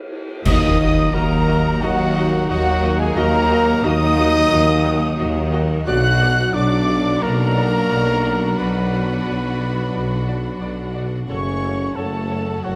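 A dark French horn section holds sustained chords at the heart of this heroic, epic orchestral film cue in Eb harmonic minor at 89 BPM, joined by a bright trombone section, a clear symphonic string section and a clear solo trumpet playing stabs, while a dark studio violin section carries the melody over a hollow silver flute and a lush symphonic violin section on a second line. A quiet viola section fills in the accompaniment, and a rich cello section, expressive double basses with portamento and a roomy tuba anchor the low end as the harmony moves from Ebm to Bm to Gbm. Cymbals, bass drum and a dry timpani hit mark a band accent at 0.5 seconds, with a huge, barely audible impact beneath, all set in a wet scoring stage reverb in this cut from a longer piece.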